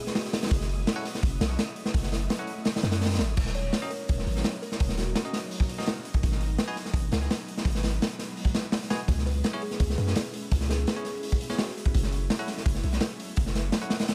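A raw, boomy garage drum kit with a gritty, saturated character and tape echo drives this nostalgic drum and bass and jungle excerpt over a deep, mellow 808-style bass with tube saturation, while an ethereal, warbling pad, a faint wind-like noise texture, bell-like electric piano stabs and a woody kalimba with sampler grit and dub echo drift in the background of an echo-heavy, small-room mix.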